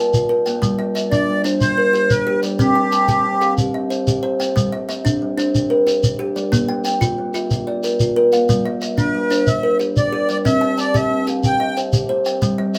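Two interlocking kalimbas open this rippling, hypnotic southern African traditional excerpt in a mbira-style cycle at 122 BPM in 12/8, one bright and thumbnail-plucked with a short, woody bite, the other thumb-plucked and ringing in a boxy small room, as a grainy, up-front shekere joins and a sweet, reedy accordion with light tremolo tuning sings the melody from 1.1 to 3.5 seconds and again from 9.0 seconds, all set in a live studio ambience over an equiheptatonic G and chords moving between Gm, C and Bb.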